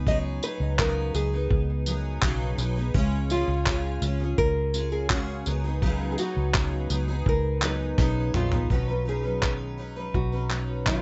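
A dry, close-sounding mix with a soft, rounded top end opens this short section cut from a longer acoustic pop piece, sunny and heartfelt in mood. A dusty soul sampler-style kit sits up front, compressed and gritty, with a thumpy kick, a fat snare, handclaps, tambourine and toms, all carrying a tape-warm, small-room character. Beneath it, a vintage muted fingered electric bass adds a dark, round, amped low end, also placed up front. A picked, full-bodied jumbo steel-string acoustic guitar is double-tracked with plate reverb for the accompaniment, while a small, bright fingerpicked nylon-string guitar carries the melody through plate reverb and delay. A drum fill at 8.0 seconds leads into a new section at 8.7 seconds, where the harmony settles on a Cbadd9 chord.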